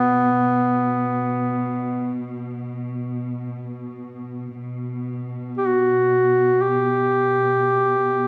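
A moderate recital-hall reverb gives this brief recording a gentle sense of space, with the solo duduk placed up front. It is a Caucasian folk lament in free time, mournful and full of longing, cut from a longer piece. The duduk carries the melody in a folk style between B3 and G4, its tone warm, while a studio string section sustains a low drone on B2 further back. The strings sound lush, smooth and even, bowed as an ensemble with vibrato and a smooth top. Both parts play throughout, from 0.0 to 8.3 seconds, and the melodic material repeats, its second statement beginning at 4.6 seconds.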